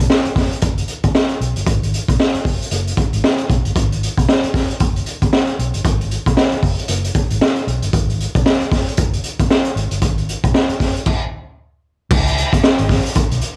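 A swung sixteenth-note groove at 115 BPM in 4/4 drives this sly, hypnotic funk fragment in G# minor, cut from a longer piece. The raw garage drum kit sits up front with crash cymbal, hi-hat, punchy kick and a high-tuned snare, its small-room sound mid-forward, saturated and gritty, with a rolled-off top and a cassette tape treatment. Beneath it, a vintage muted fingered electric bass stays in the background, dark, round and foam-muted through an amp, moving low between F#1 and C#2. The dry home cassette recording keeps the feel close and unvarnished. A stop arrives at 11.1 seconds and lasts until 12.1 seconds, when a brief new section begins and carries the groove to the end.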